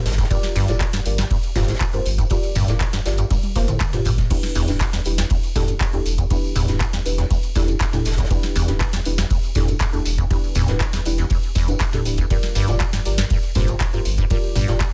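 A rubbery, resonant acid bass riff drives this raw acid house excerpt over a deep electronic kick, a booming analog drum machine with crisp snare and metallic hats, a round sine sub bass pumping from sidechain, dark chord stabs smeared with phaser and dub echo, a jingly background tambourine and a very quiet studio kit, with a drum fill at 3.3 seconds before the harmony moves from Gm7 to Em7 in a dense, heavily limited mix.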